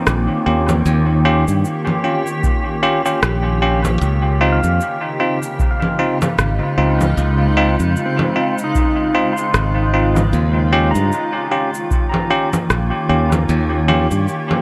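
Ambient dub at 76 BPM in 4/4, with a swung sixteenth-note feel in Eb mixolydian, this hazy, spacious passage is cut from a longer piece. A granular cloud pad holds sustained chords throughout, its blurred, evolving texture carrying built-in reverb, while a twangy pedal steel guitar, played with fingerpicks and slide and marked by volume swells, spins arpeggios in the background through tape echo. Up front, a growly fingered electric bass anchors the low end, and a bell-like tine electric piano adds clean stabs soaked in dub echo. Electronic rim click, shaker and congas, re-recorded in a small room and sent through dub echo, run nearly the whole length, joined by a deep analog kick drum from 2.4 to 12.1 seconds. The harmony moves from Eb7 to Dbmaj7 at 4.0 seconds and back to Eb7 at 10.3 seconds, all set in light digital ambience.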